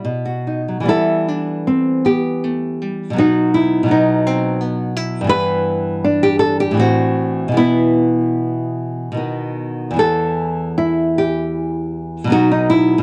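Yearning and elegiac, this romantic duo for two nylon-string guitars moves in a rubato 3/4 through minor-key harmony, in a short passage cut from a longer piece. A warm, full-bodied fingerpicked accompaniment with audible finger squeak sounds from the start, and a small, bright melody guitar sits up front from 0.9 seconds. Light reverb surrounds the pair, and the whole recording carries the worn, warbling pitch drift of old cassette tape.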